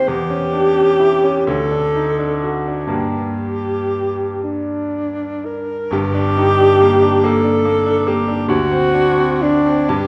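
Romantic classical duo in G minor, a serene and tender fragment of a longer piece in a slow, rubato 6/8 at around 39-48 BPM, where a mellow, punchy alto saxophone sings the melody up front with classical vibrato over a bright, brilliant grand piano accompaniment moving from Em6 through D and Gm to D7, all set back in a reverberant recital hall with a softened top end.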